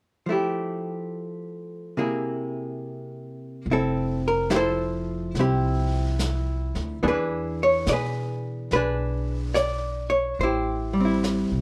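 A miked and amplified archtop guitar opens alone at 0.3 s, playing dark, clean, picked chords over Fmaj9 and Caug7 with a compressed, hollow-body tone set up front. This tender, intimate jazz ballad moves at 71 BPM in 4/4 with a swung eighth-note feel in F major. At 3.7 s an upright bass and a vintage brush drum kit join together: the bass is plucked on gut strings, woody and thumpy, sitting close in the mix, while the drums keep a softer place with brushed snare, snare drum and hi-hat, their small-room sound rolled off at the top. Under the guitar, the harmony moves from Fmaj9 to E7 and settles on Am7. A moderate club reverb gives the trio a close, late-night setting, and the passage, cut from a longer piece, runs to 11.6 s.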